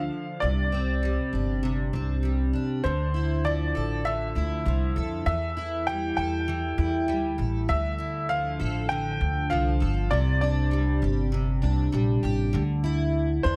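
A bright upright piano with audible action noise and tape echo carries a tender, reflective melody in D minor over a full-bodied, double-tracked picked steel-string acoustic guitar and a woody pizzicato upright bass, all up front in a moderate studio reverb, in this gently swung acoustic pop excerpt at 99 BPM that moves through Csus2, Dmadd9 and A7(no3)/E before settling on Dsus2 at 12.5 seconds.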